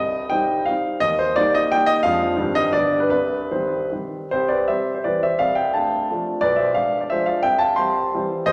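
Heard in a reverberant recital hall, a warm, up-front grand piano plays alone through this short fragment of a longer romantic classical piece. It is a capricious, nostalgic triple-time dance with dotted rhythms and a flexible rubato feel, ranging from low bass notes to bright upper ones. At 4.3 seconds the music moves into a contrasting second section, and the excerpt ends at 8.5 seconds.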